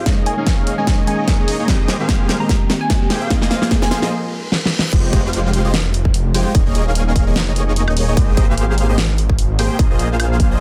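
A huge, dense supersaw riff pumps through this lush, bittersweet future bass excerpt in F minor at 148 BPM, with a half-time swing feel, joined by a glassy wavetable pluck melody under a filter sweep, glassy digital keys, a very quiet breathy pad, a punchy up-front electronic kick and a big-room kit with a huge snare, all building through drum fills and a reverse cymbal until a thick, detuned saw bass arrives with the drop at 4.9 seconds.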